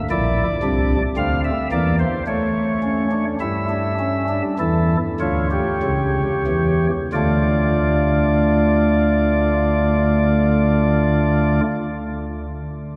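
The rhythm moves in a straight 4/4 pulse that slows down over the first seven seconds before settling into the closing passage. This contemplative, solemn piece is a baroque-style three-part fugue for pipe organ, cut from a longer work. The organ plays solo from 0.1 to 11.6 seconds on soft flute stops, its baroque voicing marked by a gentle chiff at the start of each note and a tremulant that gives the tone a trembling quality. The harmony begins on Bb, shifts to A7 at 2.3 seconds, and arrives at D minor as the second passage opens. The organ sits up front, yet a cavernous cathedral reverb with a five-second decay surrounds it and lets each chord linger in the hall.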